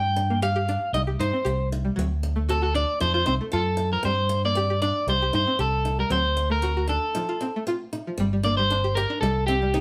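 A slightly broken-up electric guitar carries the melody up front from the start, over a round, dark fingered electric bass and a woody, boxy acoustic guitar with old strings picking a quieter accompaniment. At 0.3 seconds a bright, twangy plucked synth with a string-like, full-bodied tone and chorus begins playing arpeggios. This is danceable highlife guitar band music in G minor at 116 BPM in a straight 4/4, cycling through G5, C minor, D and F. A break arrives at 7.2 seconds, and at 8.2 seconds the music moves into a new section on G minor and C minor. The band sounds as if it is playing live together in one room with moderate studio reverb, and the clip is cut from a longer piece.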